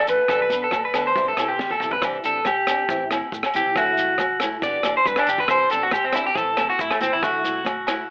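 A brief hollow, vibrato-tinged concert flute with tape echo opens this joyful highlife guitar band excerpt, stopping at 0.7 s, over a twangy, slightly broken-up electric guitar playing up-front arpeggios with tape echo and a round, foam-muted bass in the background. At a brisk 138 BPM in straight 4/4, a full-bodied jumbo acoustic guitar with finger squeak picks out accompaniment. A dark, punchy breakbeat kit with a high-tuned snare is joined by ringing agogo bells, a grainy shekere and hard-handed congas. After a drum fill at 1.6 s, a clean electric guitar solo enters at 2.0 s across Cadd9, Am, Dadd9 and G changes, all heard through a telephone-like filter and moderate studio reverb.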